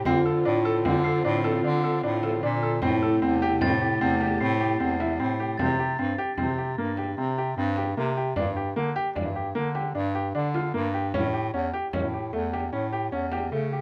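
A hypnotic, pensive stretch of contemporary chamber music moves in an uneven 7/4 at 151 BPM with a straight feel, cut from a longer piece. Up front, a breathy bass clarinet carries the bass line in a jazz style, its bright, soft-attacked notes scooped and touched with light vibrato, while a clear baby grand piano spins arpeggios from 0.1 seconds to the end. A deep, distant frame drum sounds through a large room beneath them, and in the opening moments a vibraphone with soft mallets rings a mellow second line over muted, con sordino strings that hold dark, veiled chords in the background until 5.6 seconds. A glockenspiel with soft plastic mallets adds airy, bell-like glints high above from 1.0 to 6.8 seconds. The harmony drifts from Dm7 and Am7 to C5, Gm and finally A7, all captured with close, detailed microphones and light reverb.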